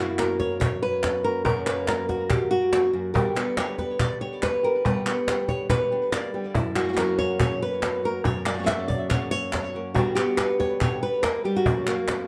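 Intense and fiery, this short flamenco passage, cut from a longer piece, moves in a straight 4/4 over a chord motion that sways between F# and G. Up front, a fingerpicked acoustic flamenco guitar carries the melody from low in its register up to E5, its notes trailed by a tape echo. A second fingerpicked guitar sits further back, adding stabs beneath the lead. The cajon enters at 0.2 seconds with a woody tone, soft hands, faint snares and a live-room air, joined at the same moment by crisp, vintage-sounding palmas hand claps with a band-limited edge. Close, detailed microphones and a moderate studio reverb give the recording an intimate yet present sound.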